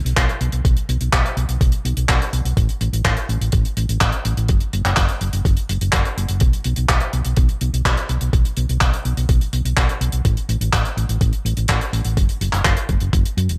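A hollow-body, short-scale electric bass opens this italo disco cut at 0.0 s. Its fingered tone is dark, round and punchy, moving between E1 and F#2 at a steady 125 BPM in straight 4/4. Within moments a damped 70s acoustic drum kit enters with handclaps and hi-hat, set close and dry but carrying a gated reverb. An electronic, sampler-style kick joins at 0.2 s with a thumpy weight that anchors the groove until 13.2 s. The mood is melodramatic yet danceable, and the overall sound stays close and present with very little room ambience.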